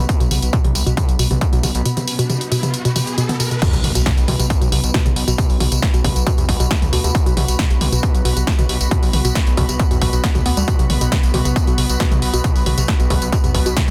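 A dense, heavily limited modern mix with little reverb opens this cut from a longer driving peak-time techno track, dark and relentless at 136 BPM in a straight 4/4. At 0.1 seconds a distorted, overdriven electronic kick enters up front, together with a punchy analog drum machine carrying a tape-tinged snare, hi-hat, tambourine, toms and crash cymbal, its hats, toms and cymbals pumping with sidechain. Underneath, a gritty, nasal driven synth bass holds the low end between B1 and E2, while a woody, percussive wave-folded pluck carries the riff from B2 to B3, coloured by chorus, tube saturation and dub echo and pumping along with the bass. A deep, warbling ambient pad with a vintage, detuned character hangs above, softened by chorus and its own reverb. A riser builds in the background from 1.8 seconds into an impact at 3.6 seconds, where the drop arrives and the groove presses on to the end.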